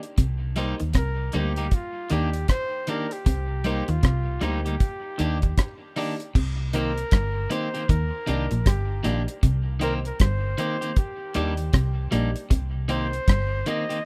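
Roots reggae with a laid-back, serious mood, cut from a longer piece and lightly swung over a Cm7 to Ebmaj7 vamp. A deep, dry drum kit with a tight kick and a round, foam-muted bass sit up front, while a slightly broken-up, picked electric guitar plays a low riff and a second, twangy guitar adds background accompaniment with dub echo alongside mellow, short piano stabs. A flugelhorn solo carries the melody from about 1.0 s, its vibrato and scooped notes trailing dub echo, set in the small-room sound of a rough home demo.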